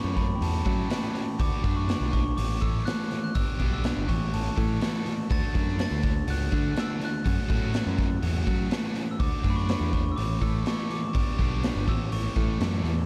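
Indie rock with a jangly, carefree mood, this short excerpt from a longer piece moves in a straight 4/4 feel over a chord cycle that opens on F#m7 and circles through D, A and G. A glockenspiel struck with soft plastic mallets carries the melody high above the band, its mellow, bell-like ringing trailed by a digital delay. Two picked electric guitars play riffs beneath it: one sludgy and overdriven with a warm tone, the other a high-gain distorted part with a sharper edge and a lush chorus, sitting lower in the mix. A punchy, direct electric bass with a modern bright attack anchors the low end. The raw garage drum kit comes in at 0.2 s and sits up front, its saturated, gritty kick, snare and hi-hat carrying a rolled-off top and a pumping stone-room character. The overall production is dark and dry, with little reverb.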